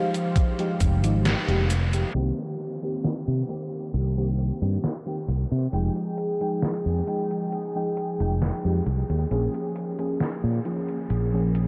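A melancholic, woozy vaporwave fragment at a slow 67 BPM in F minor, built on a lush, warbling FM electric piano with a soft pad layer and a velvety, detuned synth lead that carries the melody with vibrato until 8.8 s. A thumpy electronic kick sits up front only briefly, dropping out at 1.3 s around a band accent, while a detuned 8-bit drum machine with filtered cabasa, hi-hat and snare keeps time alongside a round, dark fretless bass with tube saturation. The whole mix is soaked in huge ambient reverb and cassette-tape haze, with a filter sweep running from 2.1 s through chords moving from Fm9 to Cm7 and Bbm7.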